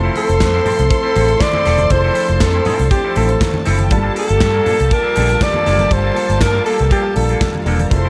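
This excerpt from a longer disco piece opens with bass, keys, guitar and strings sounding together: a round, foam-muted fingered electric bass sits up front, while clear concert grand piano, twangy picked electric guitar in the background, and two bowed string sections fill out the harmony over Fmaj7, shifting to Gm9 at 3.9 seconds. At 120 BPM in a straight 4/4, the mood is glamorous and danceable. At 0.2 seconds the modern studio drum kit arrives with a punchy kick, medium-tuned snare, hi-hat and handclaps, joined by very quiet, low-tuned congas with a thick-skinned tone. The breathy alto saxophone carries the melody from 0.2 to 7.6 seconds, played up front in a jazz style with subtone, a soft attack, light vibrato and a touch of tape echo. Behind it, a dark, woody string section with a smooth top plays a second line, while a very quiet, focused string section holds sustained chords. A small room ambience surrounds the mix.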